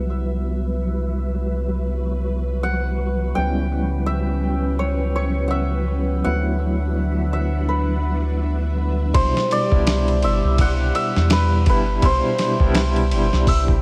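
Hypnotic and brooding, this 83 BPM trip hop excerpt with a swung 16th feel sets a shimmering, hammered santur melody with tape echo over barky tine electric piano with tremolo, sustained vintage string-machine cellos with ensemble chorus, both under a filter sweep until 9.1 seconds, a deep, round dub sub bass and a flickering, grainy background texture, before a gritty, compressed sampler-style drum kit with a thumpy kick enters at 9.1 seconds over chords moving from Cmaj7 through Em69/C# and D69 in a digital ambience.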